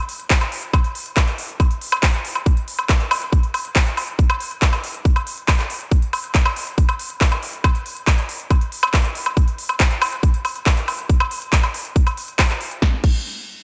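A straight 4/4 pulse at 139 BPM drives this intense, hypnotic trance passage, which is cut from a longer piece and built entirely from percussion. The big-room dance drum kit comes in at 0.1 seconds, bringing crash cymbal, handclaps, hi-hat, snare drum and woodblock, with a punchy snare and crisp hats. That kit is overdriven and layered, and its sound, re-recorded in a large room, sits up front with a gritty edge. An electronic kick drum joins at 0.3 seconds, tight, layered and placed squarely forward, and it sits louder than the kit. Both parts carry on together until 13.1 seconds under a light reverb, forming one continuous section of polished, produced electronic drumming.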